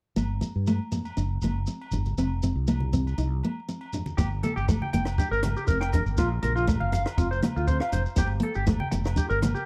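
Highlife guitar band in a danceable, bittersweet mood, where a full-bodied picked steel-string acoustic guitar, a round, punchy fretless bass up front, ringing agogo bells, grainy shekere and low-tuned congas entering at 0.9 seconds carry the groove throughout, joined at 4.2 seconds by a clean electric guitar playing arpeggios through spring reverb and tape echo alongside a compact cocktail drum kit with a tight kick, hi-hat and rim click, all in a dry, close 1970s-style studio sound on this cut from a longer piece.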